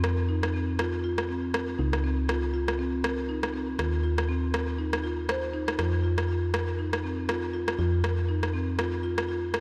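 Afro house at 120 BPM with a swung 16th-note feel, this driving, spiritual clip from a longer piece moves through F5, Db and Eb5 chords before returning to F5. Soft-mallet marimba arpeggios, mellow and boxy, pass through a low-pass filter and delay. They sit over a woody, round FM bass and an overdriven, layered electronic rim click, both placed up front. A lush hall reverb soaks the whole mix in a dreamy haze.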